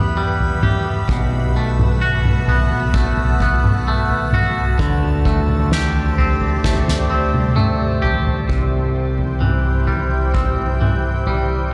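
Set in a lightly reverberant small room, this brooding, melancholic post-rock fragment at 65 BPM in 4/4 pairs an up-front, clean, twangy electric guitar playing tape-echoed arpeggios with a growling, overdriven, punchy fingered bass and a soft, bright, detuned organ-like pad holding chorused chords over Em, B7sus4 and D7sus4, while a soft-mallet drum kit with a fat snare, boomy kick and toms enters at 0.4 s and plays a fill from 6.6 s that leads into a C chord at 8.5 s.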